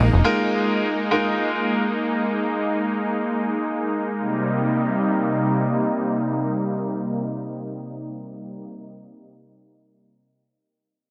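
A detuned supersaw pad carries this short, driving pop fragment cut from a longer piece, holding sustained chords from the start until 8.7 s with a slow attack and long release that give it a lush, sawtooth-edged shimmer. Alongside it, a brilliant grand piano sits up front as accompaniment, its intimate tone carrying audible action noise and long sustain before it drops out at 1.8 s. Both parts pass through a low-pass filter, and a filter sweep runs through the opening stretch. The harmony rests on Bb7sus4 before moving to Cm7 at 4.2 s, beneath an energetic mood. A lush digital hall reverb surrounds the sound, and the dense, heavily limited modern master keeps it full and forward.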